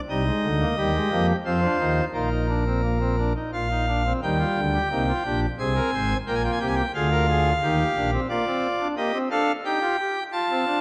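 In a steady triple metre with a straight, unhurried feel, this short passage, cut from a longer piece, unfolds as a baroque-style four-part fugue for pipe organ. A single organ voice registered on the cornet stop carries everything alone from 0.1 to 10.8 seconds, its nasal colour placed up front in a romantic voicing that spans from deep bass notes to a bright upper register. The mood is solemn and contemplative, with harmony that opens on a minor chord, passes through suspended and seventh sonorities, and comes to rest on the home major chord near the end. A new section begins at 4.2 seconds. The organ sits in a wet scoring-stage reverb that lingers for nearly two seconds, and the top end stops around 10.4 kHz.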